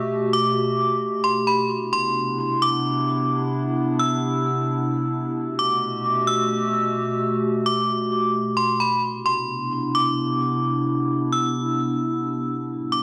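A detuned, tape-like pad opens at 0.0 seconds, holding dark, nostalgic chords that warble through chorus and their own built-in reverb, with slow attacks and long releases. At 0.3 seconds a metallic FM bell enters up front, carrying a high, ringing melody whose inharmonic, vintage tone strikes sharply, then decays with a long release and trails through chorus and analog delay. This floating, dreamy hip hop piece moves at 131 BPM in a half-time 4/4 feel, tuned slightly low to A4 = 439 Hz. The harmony drifts between Gmaj9 and Cmaj9, settling on Cmaj9 from 9.0 seconds as a new section begins. The sound is dry and gritty, with only a light reverb around the two parts, and the piece is cut from a longer work.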